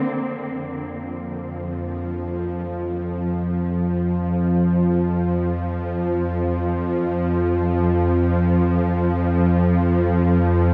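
A bowed-like synth drone stands at the front of this ominous, dark ambient excerpt, entering at 1.1 s and sustaining through to 10.7 s within a range of F2 to F3. Its string-like, sawtooth tone is built from detuned unison voices with an added noise layer, giving it a tense, bright edge softened by a slow attack, long release, vibrato and its own built-in reverb. A fade-in on the drone runs across the whole passage from 0.0 s. The sound sits in a huge, wet ambient space whose reverb tail lasts 8.3 s, framed by a dark, warm production. The drone is the only part, so the piece is a single sustained wash of foreboding tone, cut from a longer work.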